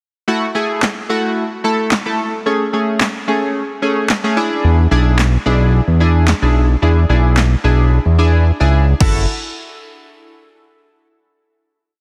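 A dense, heavily limited modern master with light reverb and digital ambience gives this short dance-pop piece a confident sheen tinged with bittersweet feeling. Retro synth keys open it in F# minor at 110 BPM in a straight 4/4, playing syncopated, closely voiced chords with bright, glossy, detuned sawtooth and pulse-wave tones that evolve through pulse-width modulation, chorus and a filter sweep, pumping against a sidechain. A punchy, tape-tinged analog drum machine joins at 0.8 seconds with a syncopated pop beat of kick, snare layered with handclaps, and crash cymbal. At 4.6 seconds a fat, saturated sawtooth bass arrives up front with a thick, sustained syncopated figure that also pumps to the sidechain. The harmony moves through F#m7, Amaj7 and E7, and after a short silent gap a final F#m7 chord rings out at 9.0 seconds to close the piece.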